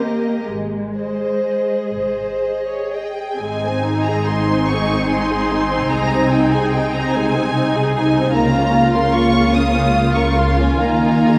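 A rubato 6/8 sway at a slow 40-52 BPM in dotted quarters carries this serene, lyrical slow movement for string orchestra in Ab major, a passage cut from a longer piece that moves from Ab through Ab/C and Bbm/Db to an Ebsus4 near 10.8 seconds. A focused, close violin section sings the high melody with rich vibrato, while a second violin section sits up front with a warm, expressive tone and portamento. Smooth, even violas, distant cellos in the background and soft-attack double basses fill out the harmony and bass, all bowed with vibrato and heard from further back in a wet scoring-stage reverb.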